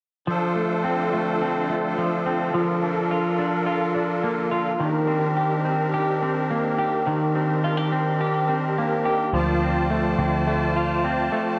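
Worn, warbling cassette tape with drifting pitch and a wet hall reverb wraps this hazy, ethereal dream pop excerpt at 106 BPM, where a reedy, shimmering musette accordion holds sustained chords alongside clean, hollow-bodied electric guitar arpeggios thickened by analog chorus and tape echo, through Dm7, Bbmaj7/D and Cm7/Eb, until a dark, round, foam-muted picked bass enters at 9.3 seconds as the harmony returns to Dm7.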